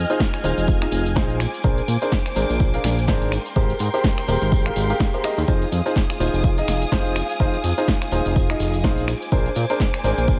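Energetic and soulful, this short cut from a longer piano house track swings on its sixteenths as a bright, woody upright piano riff, filtered and touched with tape echo, rides over a fat, detuned sawtooth bass, a punchy electronic kick, a tape-warm analog drum machine with finger snaps, hi-hat, shaker and snare, a saturated tambourine in the background, and a rich bowed string section holding vibrato-laden chords, with the strings, bass and piano all pumping through sidechain compression over Fm7, Bb9 and Abmaj9 harmony in light reverb.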